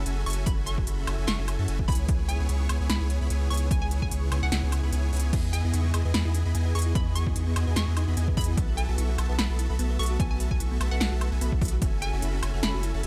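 Future bass at 148 BPM in C# minor, this lush, dreamy piece moves with a half-time, lightly swung feel, cut from a longer track. Huge, detuned supersaw chords carry the riff with lush chorus and sidechain pumping, resting on a deep, saturated sub bass that sits up front, while a very quiet, shimmering ambient pad holds sustained chords beneath them. A hollow, bouncy square-wave pluck plays the melody high in its range with subtle chorus and delay, and from 5.3 s a round, tine-like FM pluck adds mellow arpeggios in the background, washed in dub echo. The drums are punchy and overdriven: an electronic kick, plus a kit of crisp hats, snare, crash cymbal and woodblock, with the kick dropping out briefly from 4.9 s to 5.3 s. The harmony moves through F#m9, C#m7, Emaj7 and B7sus4 before returning to F#m9, and the mix is dry overall, with little reverb.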